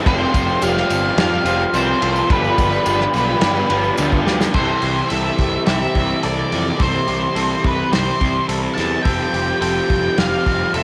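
A hazy home cassette recording with light reverb frames this blissful, wistful slice of shoegaze and dream pop rock, cut from a longer piece and played with a straight feel. Up front sits a loose indie drum kit with a small-room, rolled-off character, a tight kick and medium-tuned snare alongside crash, ride and hi-hat. A growly fuzz bass, direct and amped with transformer saturation, anchors the low end. A dark octave-fuzz lead guitar carries the melody through distortion and analog delay, over a biting overdriven riff coated in lush chorus and tape, a raw garage guitar riffing in the background with reverse reverb, and a twangy, scooped clean guitar picking very quiet arpeggios. In the opening passage a hollow, flute-like pad holds very soft sustained chords, joined by a double-tracked crunchy guitar riff and a jingly tambourine, over Fsus2 and G7 harmony. A drum fill at 4.3 seconds leads into a new passage at 4.5 seconds, where the pad, crunchy guitar and tambourine stop and the harmony settles on C before returning to Fsus2.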